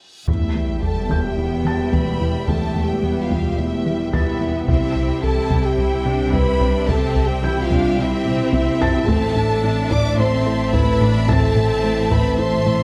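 Mellow, distant French horns hold sustained chords over a brooding, tense cinematic cue in E minor at 109 BPM, which blends orchestral and electronic forces as the harmony moves from Em to C to Am. A soft felt-muted upright piano with tape echo sounds from the very start, and a huge, bright reverse cymbal and sub drop follow at 0.2 s. Then lush bowed violin sections carry an expressive vibrato melody and a focused second line above background violas, cellos and double basses, while a punchy, wave-folded analog bass riff, a chorused sawtooth pad and a dark, tine-like synth pluck playing arpeggios fill in the texture. Taiko drums struck with hard sticks sit behind, with a fill at 8.3 s, and the whole cue is set in a moderate recital hall reverb.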